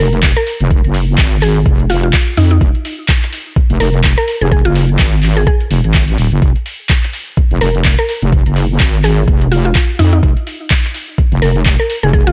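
Aggressive and gritty, this bass house cut from a longer piece rides a swung sixteenth-note feel over a single F minor chord. A heavy, wobbling bass sits up front with a detuned square-and-sine tone, resonant and saturated, treated with chorus and sidechain pumping. The electronic kick drum, entering at 0.2 seconds, delivers a knocking, overdriven punch as the loudest part of the mix. A garage drum kit adds handclaps and metallic hi-hats, layered and roughened with overdrive. Above it all, a mallet-like synth pluck carries the melody with a woody, round, percussive tone, its FM and triangle character treated with chorus, cassette tape colouring and tape echo in an otherwise dry space.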